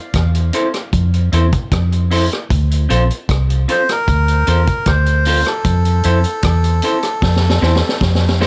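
This excerpt of roots reggae opens with a dark, foam-muted electric bass sitting up front and a vintage drum kit with a punchy kick, high-tuned snare, rim click and hi-hat, all moving at a laid-back 76 BPM in a straight 4/4. At 0.5 seconds a clean, hollow-bodied electric guitar joins in accompaniment, its picked tone colored by harmonic tremolo and tape echo. The harmony sways between Fmaj7 and Dm7, giving the groove a hypnotic, unhurried pull. At 3.7 seconds a reedy, breathy melodica enters with the melody, its nasal voice also carried on tape echo. A drum fill from 7.2 seconds closes the passage, with the whole band framed by a small room ambience and the kit's rolled-off top lending a vintage character.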